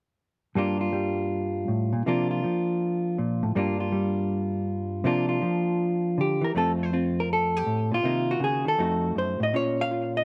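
Relaxed and warm, this brief solo jazz passage is lifted from a longer piece and moves with an easy swing in four. A lone electric hollow-body guitar carries everything from 0.6 seconds, ranging from low F2 up to F5 with a dark, clean, fingered tone that is compressed and sits up front. A slapback echo trails the guitar, while a light reverb and an open-air recording lend a natural, uncluttered setting. The first passage circles between Gm9, C9sus4 and Gm7 chords, and at 6.5 seconds a second section settles on F before moving through Cm7b5 and F7b9 to land on Bbm as the clip ends at 10.2 seconds.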